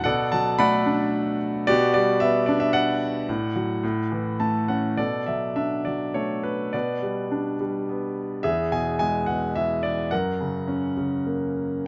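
Cool and brooding, this short classical excerpt is a lyrical solo for bright concert grand piano in 3/4, played with a flexible, rubato feel. The piano reaches from deep bass notes up into a brilliant upper register, and its tone is polished and present, with long sustain. Chords such as Bm7, Gmaj7/B and D/A shape the opening phrase, and a brief piano fill from 4.1 to 5.0 seconds leads into a new section. That second passage moves through Bm7, G/B and E before arriving on F#. Close, detailed microphones place the instrument up front, while light reverb adds a touch of space around it.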